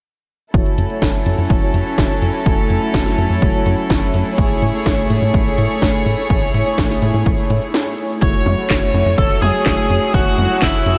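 Melodramatic and danceable, this italo disco fragment rides a punchy, overdriven electronic kick, a house kit of cracking snare, metallic hats, handclaps and toms, and a tight sawtooth sequencer bass, while fat, detuned synth brass stabs with chorus and delay sit over floating, sul tasto chamber strings that hold sustained chords until 8.2 seconds, when a biting, picked lead guitar steps up front with the melody, the whole mix dreamy and soaked in huge ambient reverb.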